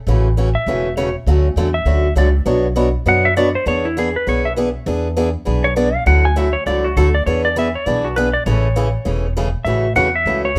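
A lightly reverberant, up-front sound carries this cheerful, down-home western swing excerpt, where a bright, boxy picked acoustic archtop guitar and a woody, thumpy pizzicato upright bass on gut strings swing through the changes from A6 through Amaj7 and back to A6 while a dark, compressed clean lap steel guitar, played with a slide, volume swells and plate reverb, enters at 0.6 seconds to take the melody as a solo.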